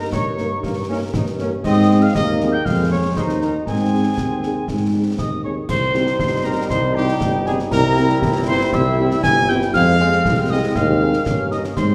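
A church or concert hall lends this short cut from a longer wind-band march a wet, reverberant glow, with the hall's tail hanging for about 1.6 seconds. It is festive and spirited, moving at 119 BPM in a straight 2/4, tuned slightly flat to A4 = 437 Hz. A mellow cornet with a soft attack carries the classical-style tune up close, while a pure, woody piccolo with vibrato and a crisp attack traces a second line above it. A bright, tight trombone section holds sustained chords, and a very quiet French horn section fills in accompaniment from 0.4 seconds. Anchoring it all is an up-front, smooth-topped tuba bass, backed by concert snare, bass drum and clash cymbals that sound close and dry, with dark cymbals. The march shifts into a new section at 5.7 seconds, where the harmony turns toward minor before settling back.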